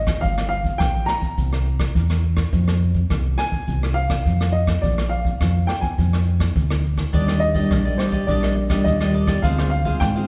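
Lively yet bittersweet, this short cut from a longer samba and choro piece moves at 104 BPM in a straight 4/4, its harmony passing from Gm7 and C7 through Fm and Bb7 before settling on Ebmaj7 and Dm7b5. A dark, mellow baby grand piano carries the melody between C5 and Bb5, its intimate tone and short sustain accompanied by audible action noise. Underneath, a deep fingered electric bass sits up front with a round, dub-like weight between G1 and Ab2, while a jazz brush kit of hi-hat, boomy kick and rim click keeps time close to the listener. At 7.1 seconds a crisp, picked cavaquinho and a fingerpicked classical nylon-string guitar join as accompaniment and play through to the end. The whole ensemble sits in a moderate recital-hall reverb with a church or concert-hall character, and lossy compression artefacts colour the sound.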